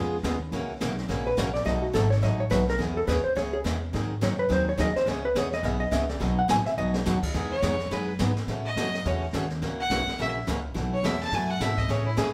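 Western swing country with a playful, cheerful bounce: a picked steel-string acoustic guitar with audible finger squeak and a thumpy, woody pizzicato upright bass drive the swung groove, while a distant, roomy brushed drum kit with dark cymbals and a boomy kick sits further back. A dark, clean hollow-body jazz guitar takes the first solo from 1.3 seconds, a drum fill marks the handoff, and a clear, boxy fiddle with light vibrato plays an intense solo from 7.5 seconds. The band sounds as though it is playing live together in one large studio room with moderate reverb, in a short section cut from a longer piece.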